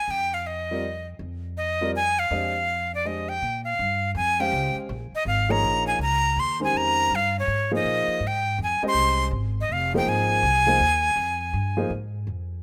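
A breathy, bright flute opens this hypnotic, intense modal jazz excerpt in a swinging waltz time, carrying the melody up front with a crisp, chiffy attack, a reedy straight tone and plate reverb. A woody pizzicato upright bass enters almost at once, and a warm, intimate grand piano with audible action noise and long sustain joins at 0.7 s as accompaniment. The harmony moves from Fm9 to Bbm9 at 3.4 s and settles on Fm at 7.8 s, heard in a lightly reverberant room with the rough sound of a home demo.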